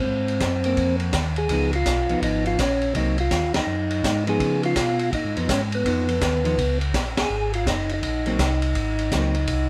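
Two tonewheel organs open this soulful, swinging soul jazz organ trio fragment, cut from a longer piece: one carries the melody with a round, percussive third-harmonic attack through a slow rotary speaker, while the other plays the bass lines in a mellow, dark register colored by chorus vibrato and the same slow rotary. The vintage drum kit joins almost at once, sitting up front with a punchy kick, a high-tuned snare, hi-hat and a ride with dark cymbals, their top end rolled off in a studio-room sound. A clean, picked hollow-body electric jazz guitar adds accompaniment shortly after, following the harmony as it moves between Ab9 and Db9 chords. The whole band hits accents together at 3.5 and 7.1 seconds, punctuating the swung eighths. A moderate club reverb gives the group a close, intimate room around it.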